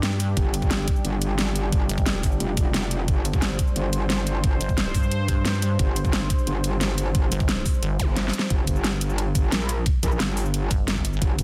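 Dense and heavily limited in a digital ambience, this dark, futuristic drum and bass at 177 BPM is cut from a longer piece and sits in a straight 4/4 drop throughout. A knocking, tape-warm electronic kick and a dubstep kit with a huge snare, metallic hats and shaker drive it, with a drum fill at 8.2 s, while a metallic, distorted FM wobble bass growls up front beneath a pulsing, detuned pluck wobble bass that drops in and out. A bright, resonant sawtooth pad with a slow attack, a filter swell and sidechain pumping holds chords until 8.5 s, and a brief electronic zap flickers in the background at 8.0 s.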